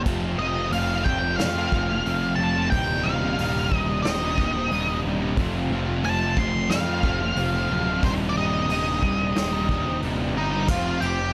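A steady, straight 4/4 pulse drives this brief cut from a longer quiet-loud alternative rock piece, its mood angsty and cathartic. A soft brush drum kit with a natural studio-room sound, a medium-tuned snare and a tight kick keeps time on hi-hat, ride and crash, while a growly, punchy fuzz bass sits up front with a direct, amped overdrive. Two thick fuzz guitars play the riff in the background, one bright and the other warmer, both distorted and picked. From 0.4 seconds an octave-fuzz lead guitar takes a dark, distorted solo high above the band, carrying the melody across the whole passage. The harmony moves back and forth between F and Cm/Eb, and the dry sound carries some lossy compression artefacts.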